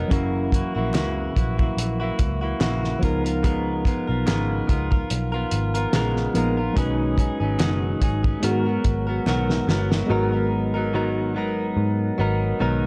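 Mellow and hazy, this indie and bedroom-pop excerpt in G# minor moves at 72 BPM with a lightly swung 16th feel, as a clean, direct-recorded electric guitar soaked in lush chorus and vibrato sits up front beside a worn, slightly out-of-tune electric piano with barky, lightly overdriven tines, a dark, round, foam-muted picked bass, a cloth-damped, thuddy drum kit with a fat snare, tight kick and 12-bit sampler grit that plays a fill at 9.3 s before stopping at 10.1 s, and very quiet, hollow group handclaps, under light reverb over chords moving from F#7 through C#13 and B69 to G#m9.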